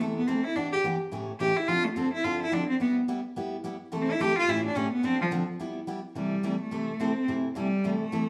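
A brisk swung 4/4 at 214 BPM drives this short, playful country cut in C major, with a picked steel-string acoustic guitar laying down full-bodied dreadnought accompaniment under a bowed cello carrying the melody from the start. The cello sings clear and smooth with vibrato, soloing through two passes of the same section while the chords cycle through C6, Em7, A7, Dm7 and G6. Both instruments sit up front in a moderate large-studio reverb that gives the live-in-one-room performance an open, natural air.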